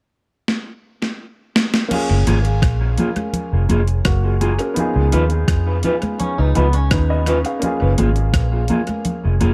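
A straight 84 BPM lovers rock groove in F# major opens with a gated 80s drum machine fill from 0.5 seconds, its thumpy kick, overdriven gated snare, rim clicks, hi-hat and crash cymbal sitting up front with tape echo. At 1.9 seconds the smooth, sweet body arrives over F#maj9 and C#9 with a worn, intimate grand piano with audible action noise and bright close congas played with soft hands. A round, dark, foam-muted fingered bass, loudest in the mix, joins at 2.1 seconds, and a dark, clean electric guitar follows at 2.3 seconds, playing stabs through lush chorus and tape echo. At 6.2 seconds a twangy, slightly broken-up guitar from a small old amp adds brief picked arpeggios, all in a dry room in this short cut from a longer piece.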